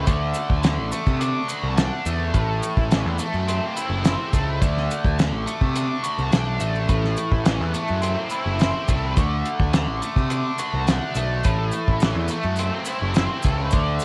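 A straight 4/4 pulse at 106 BPM anchors this mysterious, dark psychedelic rock excerpt in A dorian, with a cloth-damped, thuddy drum kit of fat snare, tight kick and hi-hat sounding gritty and rolled-off, while grainy maracas sit close and dry in the background. A biting, double-tracked overdriven guitar riff with flanger rides up front beside a punchy fuzz-laden picked bass, the pair cycling between D and Am every few seconds. Light reverb and small room ambience frame the 14-second fragment, cut from a longer piece.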